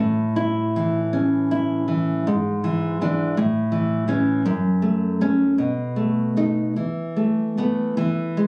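A fingerpicked nylon-string guitar sits up front in this tender, sunny romantic classical solo, played rubato in 6/8 at about 49-56 BPM in A major, moving from A through E7/G#, F#m and B7 to an Esus4 at 6.8 seconds, with audible finger squeak and a light club reverb on a compressed phone recording made in the room, all in a brief 8.5-second fragment cut from a longer piece.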